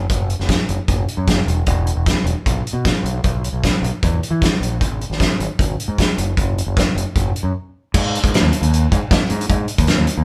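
A straight 4/4 pulse at 153 BPM drives this short excerpt of math rock and Midwest emo, and the mood is playful yet wistful. A growling, fingered electric bass carries the low end from the very start, its overdriven tone bright and up front as it ranges from E1 to E3. A loose indie drum kit joins at 0.1 s with crash cymbal, hi-hat, kick and snare, pairing a fat snare and tight kick with dark cymbals and a rolled-off top. The two parts sound like a band playing live in one room, with a moderate studio reverb giving the kit a roomy, slightly distant character. A brief break at 7.5 s gives way to a new section at 7.9 s that runs to the end.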